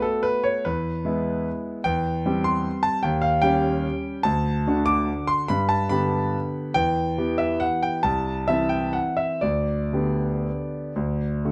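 A clear concert grand piano sits up front in a close, detailed recording with light reverb, its natural tone carrying deep bass and long sustain. This is a classical piano waltz in 3/4 and G major, played solo with a rubato feel that lets the tempo move between 114 and 158 BPM. The mood is sparkling and playful, and the piano spans a range from C2 to D6 across the 11.5-second excerpt, which is cut from a longer piece. The harmony moves from B5 through E, C/E and Eb7 to D before settling on G, then passes through Em, Am/C and G/D. The chord progression ends at 11.0 seconds, while the piano continues to the close of the excerpt.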